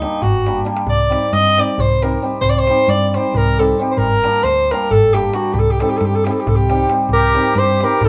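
The recording sounds like a band playing live together in one small, wet room, with a soft top end that rolls off early. It is a fiery, virtuosic Balkan wedding-band excerpt in 7/8, cut from a longer piece and moving between G minor and C minor. A clear, up-front alto saxophone carries the solo melody with vibrato and a pop-style edge, though it also has a distant, roomy quality. Beneath it, a shimmering hammered dulcimer rings out the accompaniment, a dark, round hollow-body electric bass gives an amped low end, and a clay-shell darbuka with a natural skin sits close and dry in the background, playing a quick fill around 0.5 seconds. At 7.1 seconds a reedy, airy accordion joins as a second line, its slow beating adding a warm glow in the final moment.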